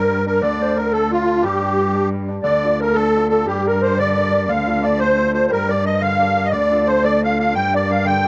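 A Celtic folk jig in G minor, this short cut from a longer piece moves at 118 BPM in a driving 6/8, its mood dark and lively. A musette accordion carries the melody up front, reedy and shimmering with its wet musette tuning, close-miked and dry. Beneath it, a baroque flute traces a very quiet second line in the same register, airy and woody with vibrato, tongued notes and a slightly unsteady quality. A brilliant concert grand piano supplies the accompaniment with deep bass and a present, cassette-tape colour, while a single bowed cello holds the low end with a focused, smooth-topped tone and vibrato. The harmony rocks between Dm and Gm across two passages of the same theme, the second beginning at 2.5 seconds, all captured as a home cassette recording in a small room with light reverb.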